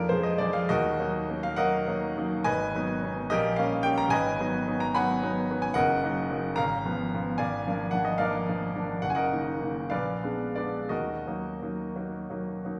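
Brooding and bittersweet, this romantic character piece for solo piano in E-flat minor moves in a rubato 6/8 at roughly 56-76 BPM in dotted quarters, and is drawn from a longer work. A bright, brilliant grand piano sits up front with an open tone and long sustain, ranging from Gb1 to Cb6 as it passes through diminished colours and an Abm7 before a Bb7b9 settles onto E-flat minor at 10.9 seconds. The recital hall's wet reverb adds a sense of distance across the 12.8 seconds.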